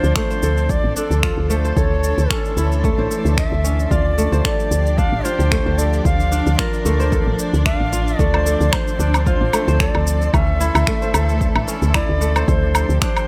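Meditative and hypnotic, this organic downtempo fragment in D minor at 112 BPM with a gentle 16th-note swing sets a reedy, chiffy cedar flute melody with tape echo over ringing fingerpicked kora arpeggios through digital delay, rich bowed symphonic strings held in the background with sidechain pumping, a round, woody FM bass up front that also pumps, a punchy layered electronic kick, an electronic shaker with finger snaps and woodblock, and a very quiet, sparkling granular texture that joins at 0.8 s, all in a light studio reverb.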